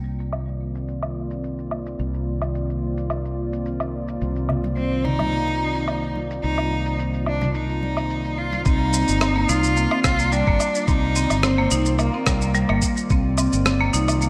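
A lightly swung groove of gritty, filtered electronic shaker, woodblock and rim click carries this meditative organic downtempo excerpt, with a round, dark fretless electric bass up front beneath a warbling, nostalgic tape-like pad that carries a filter sweep, while soft background congas join at 4.5 seconds, a clear, smooth bowed cello with vibrato and delay sings the melody, and from 8.7 seconds a woody marimba with hard mallets plays delayed arpeggios over a thumpy electronic kick, the mix sitting in a lush hall reverb with a bright 1980s-style digital sheen.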